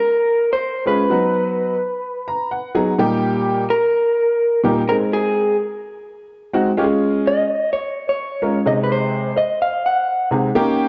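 A straight 4/4 pulse at 127 BPM drives this short, danceable soul excerpt, its uplifting mood carried by a steady chord cycle moving from Db through Cb, Eb over Bb and Ab. An electric guitar played through a small old amp opens at 0.0 seconds with the melody, its picked, slightly broken-up tone sounding compressed and lo-fi, set up front and bathed in spring reverb. An upright piano enters at 0.9 seconds as accompaniment, woody and slightly detuned with a smooth, vintage character and long sustain, also placed close to the listener. The piano steps forward with a brief fill starting at 2.0 seconds before settling back beneath the guitar line. The production is dark and warm, rolled off above 7.8 kHz, with a moderate studio reverb giving both parts a modest sense of space.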